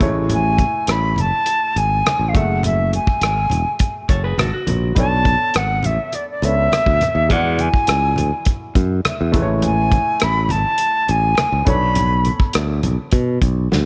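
Light reverb and a small-room ambience frame this brief cut from a longer piece of lush 1970s-style soul, silky and bittersweet, moving at 103 BPM in a straight 4/4 in B dorian. A breathy concert flute carries the melody up front, tongued and expressive with vibrato, though its tone has a slightly distant quality. Beneath it sit a growly, punchy fingered electric bass and an acoustic soul drum kit with a tight kick, medium-tuned snare, hi-hat and rim clicks under a rolled-off top, along with very quiet, low-tuned congas that sound vintage and band-limited. An intimate baby grand piano, with audible action noise and short sustain, plays the accompaniment through chords such as Amaj7, F#m9, Bm9 and E9. A slightly broken-up, picked electric guitar through a small old amp adds a short riff at 4.1 s, and a metallic, ringing vibraphone with medium hard mallets adds a very quiet texture on E5 from 5.0 s to 9.6 s.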